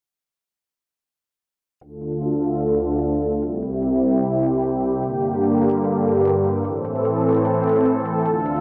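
Chaotic and heavy, this excerpt of half-time wobble dubstep at 149 BPM in D minor sets an up-front, detuned supersaw pad with a slow attack and phaser holding sustained chords through Dm, C, Gm and Am, while a very quiet layered electronic hi-hat with a metallic edge ticks beneath, both running from 1.8 to 8.6 seconds under a filter sweep and a lush hall reverb.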